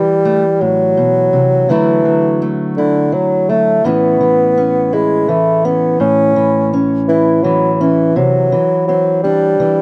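A gentle 6/8 lilt at 56 beats per minute, counted in dotted quarters with a straight feel, carries this brief passage of acoustic folk for duo or small band in A major. A mellow bassoon, played in a classical style with light vibrato, sits up front as the solo melody voice, ranging from D3 to C#4 and colored by a tape echo. Beside it, a dark-toned fingerpicked archtop guitar provides the accompaniment across its range from A2 to F#4, with audible finger squeaks adding an intimate, handmade touch. Both parts play throughout the single section from 0.0 to 9.8 seconds, moving through C, Dadd9, A and Cadd9. A moderate studio ambience lends the pastoral, unhurried mood a natural sense of space, and the passage is clearly cut from a longer piece.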